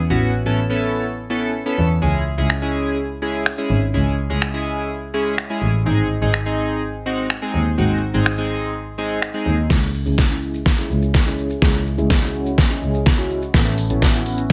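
A bowed double bass with an airy, soft-attack tone and light vibrato opens this energetic, bittersweet dance-pop track in C# minor at 125 BPM, joined almost at once by a glossy, retro, chorused polysynth of sawtooth and pulse waves. Both parts pump against the sidechain as the chords move through Aadd9, C#m and G#. An up-front, overdriven electronic drum kit enters at 2.5 seconds with a knocking kick, deep snare, hi-hat, shaker, finger snaps and crash cymbal under light reverb, and from 9.7 seconds a build-up brings a drum fill and a filter sweep on the polysynth.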